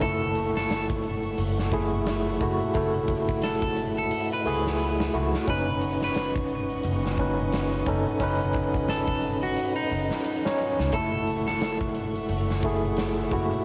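This melancholic, brooding trip hop excerpt opens with everything arriving at once in F# dorian at 88 BPM, a swung 4/4 groove moving from F#m7 to Badd9/F# at 5.5 seconds and back to F#m7 at 10.9 seconds. Up front, an overdriven tine electric piano plays barky, gritty accompaniment through a combo amp, its tremolo shimmering under sampler grit, cassette tape and plate reverb. A clean electric guitar carries the bright, picked melody, its tone soaked in tape echo and 12-bit grain before it drops out at 11.8 seconds. Behind them, a chamber violin section holds bowed chords with light vibrato, biting yet smooth on top and earthy in the background. A woody, growly pizzicato upright bass with tube saturation anchors the low end, while a huge acoustic drum kit with a punchy kick, medium-tuned snare and hi-hat pumps in a hall-like room. The whole fragment feels like a home cassette recording, lightly reverberant and dusted with vinyl crackle.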